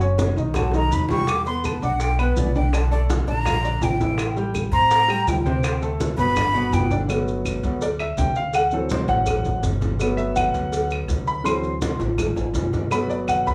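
Lively and sunny, this Afro-Cuban jazz excerpt features a breathy, hollow flute that carries the melody up front with vibrato from 0.6 s. Beneath it sit an intimate grand piano, a dark, thumpy pizzicato upright bass, tight high-tuned bongos and cowbell, soft-handed low congas set back in a large room, grainy close maracas, and band-limited woody claves that enter alongside the flute. The flute stops at 7.0 s and the piano takes over as soloist, its deep bass and audible action noise sounding natural under a light reverb, with a drum fill arriving at 11.8 s.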